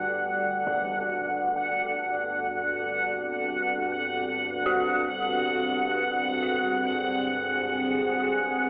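Floating in free time, this cavernous, unsettling dark ambient drone excerpt rests on a calm, nasal organ-like drone and a deep, moody sawtooth pad holding sustained chords. Up front, a bubbling, resonant texture with random filter steps sits over them, while an eerie, inharmonic FM bell plays tape-echoed arpeggios in the background, and a huge, bright impact sounds very quietly from 0.7 to 0.9 seconds. The dreamy mix is soaked in a vast reverb with a telephone-like sound, and it fades out from 7.0 seconds.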